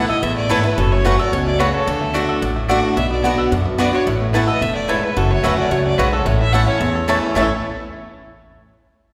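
Banjo, fiddle, swing-style acoustic guitar, mandolin and upright bass all start together in this joyful, virtuosic bluegrass excerpt, a rich, earthy bowed fiddle with light vibrato carrying the melody alongside a twangy, fingerpicked banjo set back in the mix. Up front, a bright, boxy picked guitar and a thumpy, dark pizzicato bass drive the accompaniment, while a woody double-strung mandolin adds stabs over chords moving from Asus2 through F#m, D and Bm. The whole band sits in the lush reverb of a church or concert hall, and all five parts play through to 7.5 seconds, just as a new section begins at 7.4 seconds.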